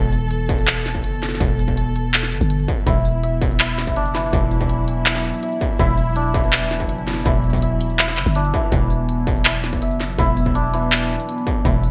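Dark and spacious, this half-time drum and bass excerpt at 164 BPM sets a dark chamber cello section's sustained, sidechain-pumped chords over a growling, buzzy 808-style bass and an up-front industrial drum kit with clanging snare, smooth hats, handclaps and gated reverb, joined at 0.5 seconds by a distorted electronic kick, while a bright, shimmering santur enters at 2.9 seconds with ringing arpeggios through digital delay, all framed by a light, bright 1980s-style digital ambience.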